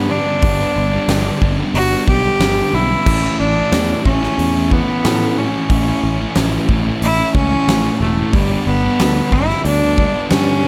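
A bowed cello with a biting, nasal edge and light vibrato carries the melody up front from the first instant of this cathartic, restless quiet-loud alternative rock excerpt, alongside a double-tracked fuzz guitar riff and a growly picked electric bass. At 0.4 s a huge arena drum kit enters with a fat snare, punchy kick, hi-hat and crash cymbal, sounding natural in a big room. The straight 4/4 passage moves from G to A and back to G at 8.3 s, all set in a small room ambience.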